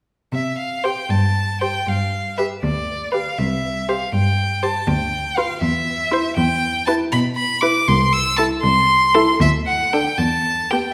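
A quick classical-period movement for string quartet in C major, this cheerful, graceful passage is cut from a longer piece and moves in a lilting 6/8 at 79 BPM (dotted quarters) with a rubato feel. A rich, up-front violin carries the melody high in its range with smooth, even bowing and vibrato, while the cello, played sul tasto with light vibrato, soft attacks and an airy bow, supplies a close, intimate bass line from 0.3 seconds. At 0.8 seconds a clear second violin joins on a quieter inner line, smooth and even with vibrato, and a viola adds expressive accompaniment in the background, its tone marked by vibrato and portamento. The harmony opens on C and passes through G7, Bdim/D, C/E, Em and Am/C before settling toward Em at 10.2 seconds. The quartet sits in a reverberant recital hall, its 1.7-second decay lending the ensemble a soft halo.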